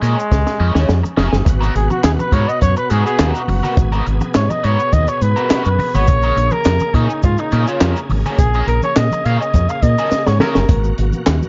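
A straight 4/4 funk groove comes from a compact cocktail drum kit, its punchy kick, high-tuned snare, hi-hat and handclaps sounding dark and smooth, with a fill at 0.3 seconds leading into the main passage. A round, up-front fingered electric bass sits beside the kit, while a grainy tube shaker and damped, soft-handed congas, entering at 1.0 seconds, add texture in the background. A crunchy overdriven guitar, bright and picked, comps through wah and spring reverb. From 1.5 seconds a full, bright tonewheel organ shouts out sustained chords through a slow rotary speaker, chorus vibrato and light overdrive, with audible key click, set back in the mix. The mellow trumpet carries the melody and takes a jazz-style solo from 1.5 seconds, its scooped notes and light vibrato sounding distant and roomy yet up front. The mood is sly and funky, with light reverb, a muted high end and a faint mains hum, in this fragment cut from a longer piece.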